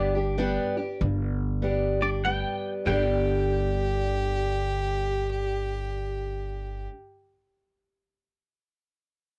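Heartfelt and easygoing, this short country excerpt sways in a swung 3/4 as a bright, twangy electric guitar with a chorus effect carries the melody over a dark, boxy picked acoustic guitar and a woody, thumpy pizzicato upright bass on gut strings. At 2.9 seconds a single bowed fiddle joins up front with a second line, its tone biting and intense yet smooth on top, with light vibrato. The sound is dry and close, like a 1970s studio recording.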